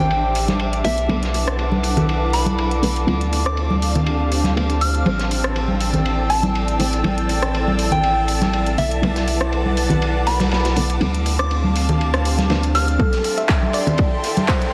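A lightly swung deep house groove, hypnotic and moody, rides a gritty breakbeat kit with dark cymbals, an overdriven house kit of handclaps, hi-hat and rim click, and ringing congas beneath a rubbery square bass, pumping breathy and ethereal pads, muted dub chord stabs trailing tape echo, a soft FM synth bell melody, and a faint shimmering string machine of violins that enters at 5.1 seconds. At 13.0 seconds the bell and bass drop out as a soft round pluck and a punchy electronic kick step in for a short build-up, while a very quiet downlifter and riser sound at the opening and close. The mix carries vinyl crackle and a lush hall reverb in this excerpt from a longer piece.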